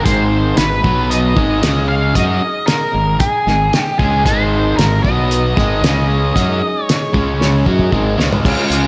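A short clip of confident, driving classic rock opens at 0.0 seconds with a double-tracked, bright distorted guitar riff, a dark octave-fuzz lead guitar picking out the melody up front, and a round, overdriven fingered bass with a fuzzy edge underneath. A cloth-damped drum kit sits up front too, its thuddy, muffled sound marked by a fat snare, tight kick, dark cymbals and a gritty, lo-fi saturation, playing in a straight four with crash, hi-hat and toms. Behind them, a mellow tonewheel organ holds sustained chords through a slow rotary speaker, clean and soft in the background with a hint of key click. Both guitars carry a slapback echo, and a moderate, lush hall reverb over a small-room ambience gives the whole band a big arena sound. A drum fill starts at 7.4 seconds, and a very quiet, jingly tambourine slips in for a moment at 8.7 seconds just before the clip cuts off.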